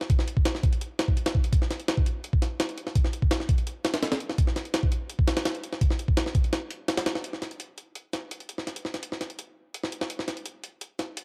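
A gritty, pitched-up jungle sampler-style drum kit of thumpy kick, high-tuned snare and hi-hat sits compressed and up front in a small room reverb, driving this raw, atmospheric drum and bass excerpt at 168 BPM in straight 4/4, opening on a drop that runs to 7.2 seconds before a new section carries the dark, lightly reverberant production through to 11.2 seconds.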